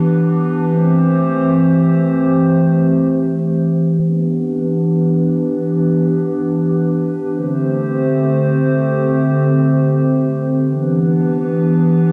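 Dark, lightly reverberant production frames this spacious, ethereal hip hop fragment in free time and E minor, where a lone warbling, detuned tape-like pad with chorus and a low-pass filter holds mellow Em7, Am7 and D7sus4 chords between D3 and C5, its filter swept from 4.0 to 10.7 seconds for a nostalgic, lo-fi glow.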